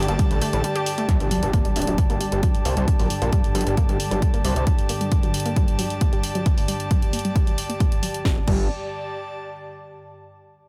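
Hypnotic and relentless, this driving peak-time techno cut opens on a heavy, up-front electronic kick and a cracking snare, hi-hat and crash from a techno drum kit, both re-recorded in a large room, under a gritty, saturated synth bass that pumps against the kick. A punchy, detuned unison pluck riff with overdrive and tape echo sits in the background alongside a deep, moody ambient pad drone and an airy, breathy pad with chorus. A brief break at 0.6 seconds gives way to an electronic impact at 1.1 seconds and a filter sweep that runs to 8.3 seconds, after which the synth bass briefly returns with the kick, drums and pluck before the airy pad carries on to the end of the excerpt.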